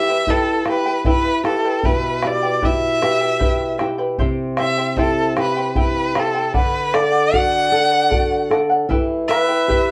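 A straight, unhurried triple-metre pulse carries this melancholic, earthy Andean folk fragment, cut from a longer piece. Up front, a single bowed erhu sings the melody with a bright, focused tone, colored by vibrato and sliding portamento. Beneath it, a fingerpicked charango adds a shimmering bed from its doubled strings, while a dark flamenco guitar, also fingerpicked, fills the lower register with audible finger squeak. A deep acoustic bombo enters at 0.3 seconds with a dark, small-room character. At 7.4 seconds a large wooden quena joins as a second line, its breathy, end-blown sound marked by a crisp chiff and expressive vibrato, all set in a live-sounding, reverberant studio room.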